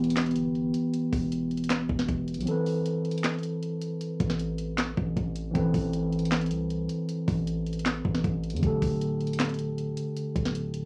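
This brooding, hard-hitting trap excerpt has the character of a home cassette recording in a small room, wrapped in a short, wet booth ambience. It moves at 156 BPM in 4/4 with a half-time feel, centred on A minor. Up front, a mellow tine electric piano plays clean chords through built-in speakers, moving from Em to Amadd9 and then to Dsus4. Beneath it, a heavy 808-style bass combines a sine tone with a noise layer, giving it a punchy, fast attack that then decays. The electronic trap kit sits up front with a tape-warm colour, pairing a knocking kick and sharp snare with bright hi-hats and handclaps. The kick drops out briefly between 2.5 and 3.2 seconds, and the clip, cut from a longer piece, runs 10.9 seconds.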